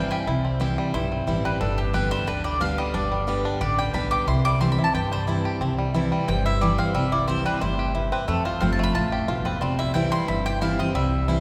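Driving and rustic, this bluegrass passage is cut from a longer piece and moves in a straight four with a steady forward push. Banjo and mandolin carry the melody together from the start. The banjo is twangy and percussive under its fingerpicks, and the mandolin is woody and double-strung, sitting higher in range. A bright, full-bodied picked steel-string guitar sits up front as the accompaniment. An upright bass plucks a thumpy, gut-string low end. The harmony moves among C, G and F, with a second section arriving at 5.6 s. The whole band rings out in the long wash of a church or concert-hall reverb before the recording cuts off at 11.4 s.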